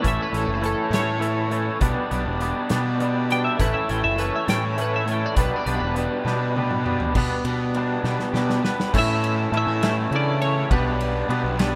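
Jangly and carefree, this short indie rock cut from a longer piece moves at a relaxed 68 BPM in a lilting 6/8, set in G lydian as the harmony rocks between A and G before trading between G/B and A. A bright, chiming twelve-string electric guitar carries the melody through analog chorus and delay, while a crunchy overdriven guitar sits up front with its riff and a clean, twangy electric guitar adds a fingered riff pulsing with tremolo. Underneath, a fuzz-drenched picked bass growls prominently, and a loose acoustic drum kit with a punchy kick and medium-tuned snare breathes in a small, pumping room, marking the changes with fills around 6.3 and 8.0 seconds. A clean electric guitar solo runs through the opening 7.2 seconds, and at 9.0 seconds a mellow tine electric piano slips in quietly in the background as a second line. Light reverb and a rough home-demo mix give the whole passage an unpolished, casual charm.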